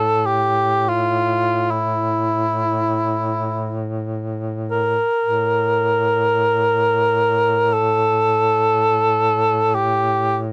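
This short passage, cut from a longer piece, moves in free time, unfolding as a Caucasian folk lament with a longing, solemn mood. A mellow cor anglais carries the melody up front, playing in a classical style with light vibrato and ranging from E4 to Bb4. Beneath it, a clear duduk holds a low drone on A2 from the opening until 10.5 seconds, shaded with vibrato and scooped notes in a folk manner and sitting well below the melody in level. Both instruments are close-miked, giving an intimate, dry studio sound in a 1970s style, touched by light reverb. The cor anglais falls silent at 10.4 seconds, just before the drone ends.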